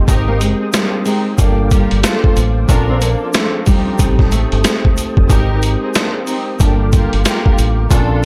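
A compressed, sampler-style boom-bap drum kit sits up front in this reflective, gritty hip-hop excerpt in G minor, with a thumpy kick, a high-tuned snare and hi-hat swung at 92 BPM in 4/4. Beside it, a deep dub fingered electric bass plays a round, dark low line, while a close, dry tube shaker ticks quietly in the background. A vibraphone with soft mallets adds metallic, ringing accompaniment with slow motor vibrato and cassette-tape colour, and a flute-like tonewheel organ holds soft sustained chords through a slow rotary speaker, key click and all. A lush, bowed studio string section punctuates the harmony with expressive stabs, with vibrato, portamento and delay. From 0.3 to 5.3 seconds a fingerpicked nylon-string guitar carries a classical-toned melody, its finger squeak audible through a touch of delay, over chords moving from Abmaj7 and Gm7 to Bbmaj9 and Am7b5. The production is dark and dry, with little reverb.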